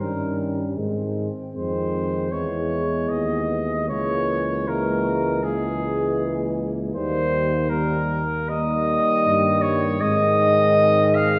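This classical, hymn-like passage for brass band moves at a serene, rubato 78 BPM in 4/4 and Ab major, cut from a longer piece. Up front, a mellow cornet carries the melody between Ab4 and F5, sounding distant and roomy. Beneath it, a tight French horn section with light vibrato and a smooth top supplies a quiet second line. A clear euphonium and a warm trombone, both distant, fill out the accompaniment, while the tuba anchors the bass. All five parts play together from 0.0 to 11.4 seconds over a wet scoring-stage reverb, moving from Eb7 through Ab, E and Bbm7b5/Db before settling from Eb back to Ab.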